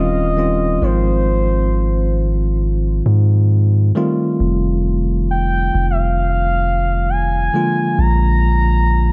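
A straight 4/4 pulse at 67 BPM sets an unhurried pace for this tender, dreamy contemporary R&B fragment, cut from a longer piece and tuned to A4 = 438 Hz, moving through Eb13, Ab6, F9 and Bb7. A deep, sine-toned 808-style bass holds long decaying notes beneath a bell-like, bright tine electric piano. Above them, a smooth gliding lead with vibrato and portamento sings through chorus and tape echo, all within a dark, dry production.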